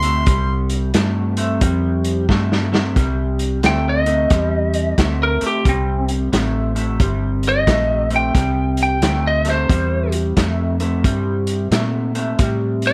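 A 64% swung 4/4 shuffle at 89 BPM drives this laid-back, gritty electric blues excerpt, where a vintage drum kit with a muffled, rolled-off top and punchy kick, a round, foam-muted fingered electric bass and a dark, slightly broken-up guitar riff through a small old amp with analog chorus sit up front, while a soft-attack overdriven harmonica with scooped notes and light vibrato opens briefly before a drum fill at 2.3 s and a bright, twangy lead guitar enters with the melody at 3.7 s, all in light reverb.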